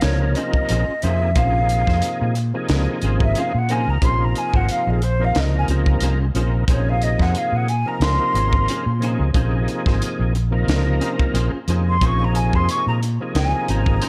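Electric jazz fusion with a slick, funky, lightly swung feel, cut from a longer piece and resting on a single chord. A breathy, hollow flute solos throughout from a distance, touched by slapback echo, over a thick, gritty overdriven tonewheel organ turning through a slow rotary speaker with chorus vibrato. An up-front amped fretless bass, a crisp acoustic kit with punchy kick and high-tuned snare in a pumping small room, and bright, twangy clean guitar stabs with ensemble chorus entering in the background at 0.2 s complete the dark, warm production with light reverb.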